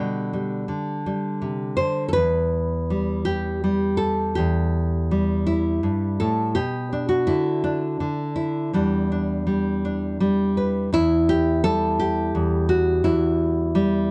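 Folk for solo nylon-string guitar, fingerpicked and up front with a deep classical tone, drifts in a rubato waltz time through a haunting, wistful passage cut from a longer piece, moving from G/B to Em, Bm and Em7 before settling back on Em at 10.9 seconds, all in a dark production with light reverb.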